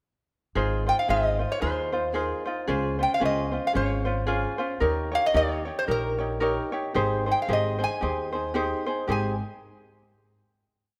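Hawaiian music in a sunny, relaxed mood with a gentle swing, heard as a complete short piece. A metallic, nasal resonator slide guitar played with fingerpicks carries a motif-based melody in period phrases from 0.9 seconds, while a light, fingerpicked ukulele strums eighths in open chord shapes and a woody pizzicato upright bass holds a two-feel of roots and fifths, both starting at 0.6 seconds. All three sit up front in a moderate recital hall reverb, moving through Ab6, Dbmaj7, Eb7 and Abmaj7 before a final chord rings out from 9.1 seconds.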